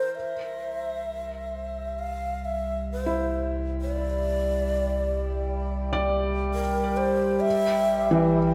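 A wet concert-hall reverb with a 2.2-second tail surrounds this brief, serene and melancholic ambient fragment, cut from a longer piece and moving at 66 BPM in a straight 4/4. A breathy, end-blown bamboo shakuhachi sits up front with the melody, its chiff, tongued attacks, vibrato and lifted highs given extra sheen by shimmer reverb and delay. Beneath it, a felt-muted upright piano plays soft, intimate arpeggios with a thin, mellow tone and audible action noise, also carried on shimmer reverb and delay. A round, deep sine sub bass holds the low end, and from 1.3 seconds an evolving, nasal analog drone built from sawtooth and pulse waves with pulse-width modulation and chorus rises slowly and sustains. Every part fades in together over the passage, with the harmony resting on C before shifting to Bb at 7.5 seconds.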